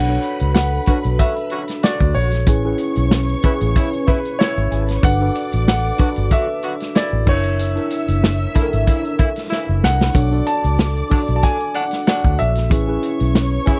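A brilliant concert grand piano carries the melody in this romantic, smooth excerpt of lush 1970s-style soul at 94 BPM with a light sixteenth-note swing, over a slightly out-of-tune tine electric piano with phaser, a sul tasto string section with vibrato, mellow horn stabs entering at 0.9 seconds, a round, foam-muted fingered electric bass and an up-front vintage drum kit with dark cymbals and a punchy kick that plays a fill at 9.5 seconds, as the chords move through Bm9, Amaj9, Gmaj9 and F#7b13 in a dry, close studio sound.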